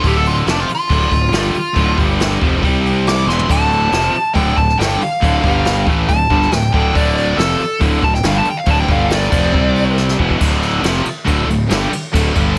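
A small, roomy sound frames this heavy, aggressive hard rock passage, cut from a longer piece, with a brushed acoustic drum kit placed up front, its dark cymbals, medium-tuned snare and boomy kick heard alongside toms, hi-hat and ride. Over the top, a nasal lead guitar with a parked wah plays an overdriven solo melody with digital delay, sitting forward in the mix until it stops at 10.0 seconds. Beneath it, three picked electric guitars carry the riff: a bright, cranked stack guitar in the background, a scooped, high-gain distorted guitar, and, from 3.5 seconds, a raw, double-tracked garage guitar also set in the background. A fuzzed, growly fingered electric bass anchors the low end with a punchy, overdriven edge. The chords move between D minor and power chords on G, F, C and E, and drum fills at 3.3 seconds and just before the short closing section mark the turns.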